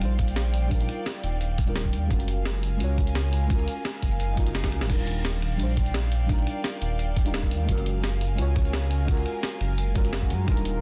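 A dense, heavily limited modern master with light reverb frames this uplifting liquid drum and bass passage, cut from a longer piece, at 172 BPM in straight 4/4 and tuned to A4 = 439 Hz. Up front sits a dark detuned saw bass, deep and rumbling with beating unison voices and tube saturation, holding the low end beside a gritty, thumpy electronic kick that enters at 0.2 seconds. A pitched-up, sampler-style breakbeat kit adds hi-hat, a medium-tuned snare and crash cymbal with tape-warm compression, and plays a fill at 4.6 seconds. Above them, a mellow chord stab with a fast attack and decaying tail carries a filter sweep and moving notch, coloured by chorus, phaser and delay. A soft, breathy pad with a slow attack sustains vintage, warbling chords under chorus and sidechain pumping. The harmony alternates between Ebmaj9 and Gbmaj9, and a very quiet electronic swell appears briefly at 4.3 seconds.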